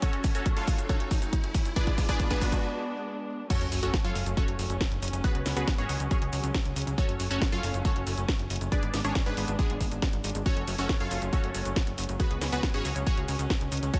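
A short cut from a longer uplifting trance piece opens mid-build-up, with a drum fill from the house kit and a riser in the background climbing over a punchy electronic kick, while a bright, detuned unison pluck carries the melody through phaser and delay. Beneath it, a muted chamber string section holds veiled, con sordino chords with vibrato, pulsing under sidechain pumping. At 2.6 seconds the fill and riser give way to a brief break, and at 3.5 seconds the drop arrives with an impact and sub drop that fades by 5.2 seconds. From there the driving, soaring groove settles in. Throughout the excerpt, a funky, tube-saturated analog bass with a sawtooth bite and fast, decaying plucks pumps against the up-front kick, and the tape-warm kit supplies a cracking snare, filtered hi-hat, shaker and crash. The harmony cycles through F#m, G#dim and C#sus4, and a light digital reverb gives the mix a sense of space.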